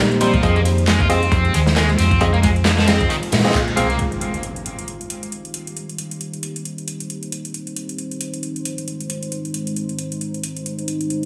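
A swung 16th-note breakbeat at 135 BPM in 4/4 drives this raw, funky excerpt. An overdriven electronic house kit of handclaps, metallic hats and ride cymbal sits under a crunchy, saturated acoustic kit with a tight kick and mid-tuned snare. A round, dark hollow-body bass and a double-tracked, picked distorted guitar riff through tape echo join barky, clean electric-piano stabs over Fm7, all capped by a band accent at 3.5 s. Around 4.0 s the bass, guitar, piano and breakbeat kit fall away as an electronic impact hits. The deep, moody sawtooth pad, with its chorus, reverb and sidechain pumping, carries on through a filter sweep over Cm7 and back to Fm7 alongside the house kit until 11.3 s. A light small-room ambience frames the whole.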